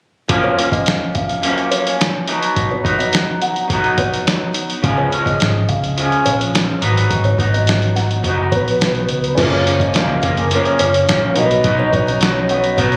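A twangy, slightly broken-up electric guitar through a small old amp sits up front with a lush chorus and warbly pitch drift, joined from the start by muffled, pitched-down sampler drums with a thumpy kick and a soft, woody kalimba ringing through tape echo in the background. This sunny, hazy indie and bedroom pop excerpt moves over F#maj7, B, C# and G#m7 chords, with a dark, round, foam-muted bass arriving at 4.8 seconds. A full octave-layered synth lead with tremolo and vibrato takes the melody at 8.6 seconds, and an intimate, slightly detuned upright piano with audible action noise and cassette-tape colour enters at 9.3 seconds, all in a phone-recorded room with club reverb.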